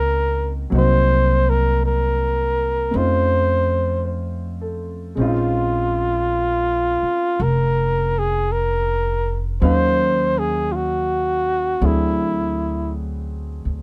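An intimate, late-night mood settles over this jazz ballad excerpt, which moves at an unhurried pace with a gentle swing. A mellow flugelhorn carries the solo melody up front, its close-miked tone shaded with vibrato, before it falls silent at 12.9 seconds while the others play on. Beneath it, a baby grand piano supplies smooth, vintage-tinged accompaniment with a warm glow. The upright bass, plucked pizzicato on steel strings, sits up front with a woody, dark voice in its low register. Rich extended chords such as Gbmaj9#11 and Bbm11 color the harmony, and the dry, detailed recording keeps every instrument close to the listener.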